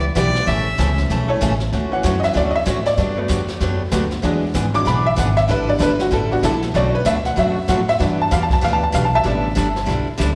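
A playful, swinging western swing fragment at 191 BPM in D major opens on bright, picked dreadnought acoustic guitar with slapback echo and a woody, thumpy pizzicato upright bass. At 0.2 s a brush kit with a high-tuned snare and boomy kick enters alongside a brief, biting, nasal fiddle line with light vibrato and slapback echo, and the jangly, metallic tack piano sits up front. From 1.7 s the piano, also carrying slapback echo, takes a honky-tonk solo over chords moving from Dmaj7 through Gmaj7, E7 and Bm7 to A7sus4, all heard as a live gig through a venue's PA with recital hall reverb.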